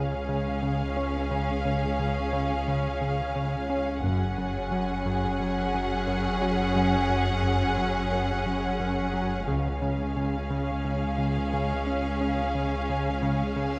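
Lush bowed strings fill a moderate scoring-stage reverb on this mysterious, uneasy cinematic excerpt at 88 BPM, where warm violins carry a vibrato melody over a second violin line, distant violas, rich cellos and a fat, saturated, detuned analog bass riff with a filter sweep, all grounded by a clean sine sub-bass drone and a glassy, beating glass harmonica holding ethereal chords in the background, while double basses touch in at 4.0 and 9.5 seconds, a very quiet high violin texture hovers from 4.0 seconds as the harmony moves from C# to F#sus2 and back, and a huge, bright cymbal swell arrives faintly at 13.5 seconds.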